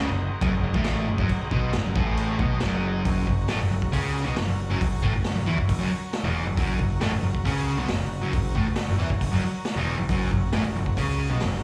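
A double-tracked fuzz guitar riff sits up front with slapback echo, driving this raw, swaggering garage rock clip, heard as a live gig through the venue's PA with club reverb. A growling, overdriven picked bass with tube saturation runs underneath, and a gritty, saturated drum kit with punchy kick, medium-tuned snare, hi-hat and crash cymbal joins at 0.4 s. A buzzy vintage combo organ holds sustained chords with light vibrato in the background, and the music moves into a new section at 3.0 s.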